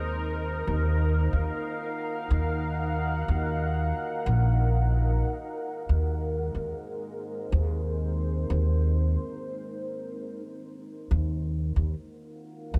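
A woody, pizzicato upright bass sits up front in this meditative ambient dub excerpt, moving at 92 BPM with a swung 16th-note feel in Eb dorian. Behind it, a deep, moody pad of detuned, wave-folded sawtooth tones with ring modulation holds sustained chords through chorus and its own reverb, shifting from Ebm to Ab7/Eb at 5.2 seconds and back at 10.5 seconds. A break arrives at 9.2 seconds, and a small room's light ambience frames the sound.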